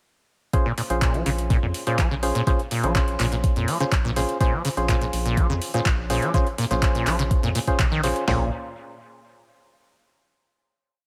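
Set in a light reverb, this trippy, hypnotic acid house piece pairs a thumpy four-on-the-floor kick, snare, floor tom and hats from a clean 12-bit digital drum machine with metallic hats and claps from a booming analog drum machine, while a squelchy, resonant sawtooth acid bass with tube saturation, lush chorus and tape echo loops a 7-step line of accents and slides that drifts against the bar over a round, deep dotted-rhythm analog bass, both pumping to the sidechain, and a hollow, organ-like percussive stab with chorus and tape echo punches syncopated chords moved in parallel, until the groove gives way to a final chord at 8.3 seconds.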